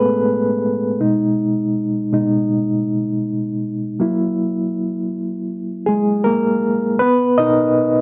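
A reedy electric piano carries this short R&B fragment alone, its tone lightly overdriven through a combo amp and shimmering with a medium tremolo as it sits up front in the mix. The mood is smooth and sensual, moving at a relaxed 80 BPM in 4/4 with a light swing on the sixteenths, in B major. Its chords drift from Amaj9 to B6 at 1 second, then to F#9 at 4 seconds, before settling on Bmaj7 at 7 seconds for a brief closing phrase. The playing spans from B2 up to D#5. A moderate studio reverb gives the piano a sense of room, while a worn cassette-tape character adds warbly pitch drift and an aged, hazy patina. Cut from a longer piece, this eight-second clip feels like a fleeting, intimate glimpse of a late-night groove.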